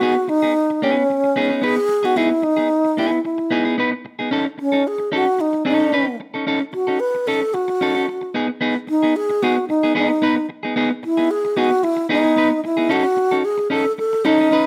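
Disco in a straight four, this short cut from a longer piece feels danceable and celebratory. A breathy alto flute carries the melody from start to finish, its soft attack, lifted highs and slightly unsteady vibrato sitting up front. Beneath it, a clean electric guitar plays picked accompaniment throughout, dark in colour and also placed forward in the mix, a little lower in level than the flute. The harmony opens on an Emaj7, moves to a rootless B9 at 4.3 seconds, shifts to B6 at 8.3 seconds, and returns to the rootless B9 near the close. A moderate reverb suggests a large studio, giving the pair some air around them.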